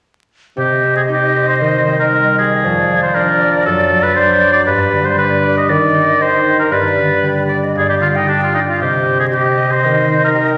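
From 0.6 seconds, flute, oboe, bassoon and harp enter together in this stormy, dramatic romantic orchestral movement in C minor, moving at a brisk 117 BPM in straight 4/4 over a progression that leans toward G before settling back on C minor. The smooth, lightly vibrato oboe sits up front as a second line, joined by the airy, expressive silver flute, while a dark, distant bassoon accompanies from below and the harp rings out fingerpicked arpeggios. A wet scoring-stage reverb and a layer of vinyl crackle colour the sound of this section, cut from a longer piece.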